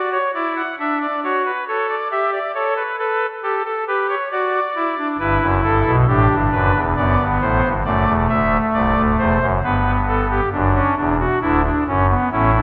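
A solo pipe organ with a soft, oboe-like reed stop and romantic voicing sits up front, its tremulant adding a gentle shimmer as it spans from deep notes at C1 up to F#5 in this stately yet lively baroque-style four-part fugue in triple metre. The 12.6-second passage, cut from a longer piece, moves through a clear progression that returns home to D at 10.5 seconds, all bathed in a wet scoring-stage reverb with a 1.6-second tail.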